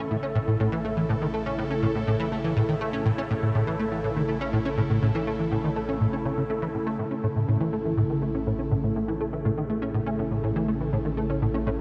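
A steady, straight 4/4 pulse at 122 BPM drives this short cut from a longer piece of ambient, sequencer-driven space music in A major, luminous and cosmic in mood. Up front, a plucky analog bass riff with a punchy, funky snap and a quick decaying filter pluck runs from the start, colored by ensemble chorus, cassette tape and analog delay. Over it, a phased analog pad holds sustained chords from detuned sawtooth voices, swirling and bright as its moving notch and chorus keep the texture evolving. Beneath both, a mellow analog drone on a low A fades in from 0.2 seconds, its pulse-width modulation adding slow, shifting motion. A huge, wet reverb with a long 8.6-second tail wraps the dark, warm production, giving the whole passage a vast sense of space.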